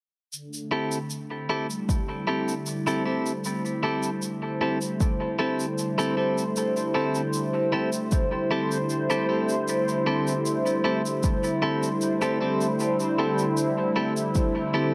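A moderate spring reverb lends this hazy, spacious ambient dub excerpt a roomy glow, with a warm detuned sawtooth pad sitting up front from 0.3 seconds, its chorus and vintage 12-bit sampler grit coloring a sustained D9sus4 chord. A dark, rolled-off shaker enters alongside it, and a clean, compressed electric guitar adds picked stabs soaked in dub echo from 0.7 seconds. At 1.9 seconds a deep, overdriven electronic kick drum lands up front in 4/4, its layered sound re-recorded in a large room.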